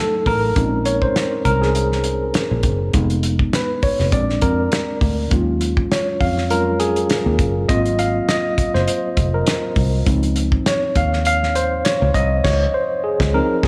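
A light reverb gives this short cut from a longer lush 1970s-style soul piece a smooth finish, with a lightly swung sixteenth feel. A worn, slightly out-of-tune tine electric piano, lightly overdriven and heard through its built-in speakers, sits up front and carries a solo over the whole passage while also supplying the harmony. Its chords move from a rootless F7b9 through Bbm11, Fm7b5, Bb7, Ebm11 and Ab13 before settling on Dbmaj9. From 0.3 seconds a fingered electric bass, bright, direct, foam-muted and punchy, holds the low end. A warm acoustic soul kit with dark cymbals, a fat snare and a tight kick, rolled off on top and placed up front in a small room, plays crash, hi-hat, kick and snare. The band hits an accent together from 12.4 seconds to the close.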